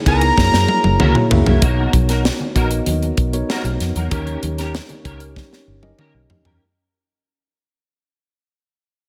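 A straight 4/4 groove at 96 BPM in B major drives this breezy, urban slice of polished 1980s jazz-funk pop: a tight funk drum kit with bright cymbals, a high-tuned snare and gated reverb plays fills at 0.4 s and 5.4 s; a dark, round, foam-muted fingered bass sits up front; a mellow tine electric piano with subtle chorus and a clean, picked guitar riff with ensemble chorus move over F#7, Bmaj7 and D#7 chords; very quiet, thick-skinned congas add color; and a fat, detuned sawtooth lead with phaser, vibrato and digital delay holds one brief high note before the music fades out from 1.6 s.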